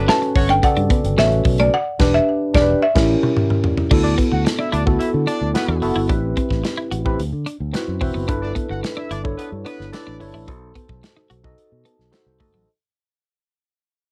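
A buzzing, woody marimba played with hard mallets carries the melody from the opening beat, dry and vintage in tone, over a brief entry from a clear horn section, a mellow tine electric piano with lush chorus, and a punchy fingered electric bass. This is breezy, upbeat 1980s jazz-funk pop at 110 BPM in a straight 4/4, set in D major, with a compressed, picked clean guitar riff under analog chorus and a polished studio drum kit with bright cymbals and a tight kick close behind. A band accent and a drum fill lead into a new section, and the marimba drops out at 3.3 seconds. The smooth-topped horns, tight and lightly vibrato-tinged, return at 4.0 seconds to play a second line as the music begins to fade out. The slightly out-of-tune, worn electric piano adds a fill at 11.6 seconds over colorful harmony that runs through chords such as Gmaj9#11, A7b9 and B7b9. The piece is cut from a longer performance and has the light reverb and cassette character of a home recording.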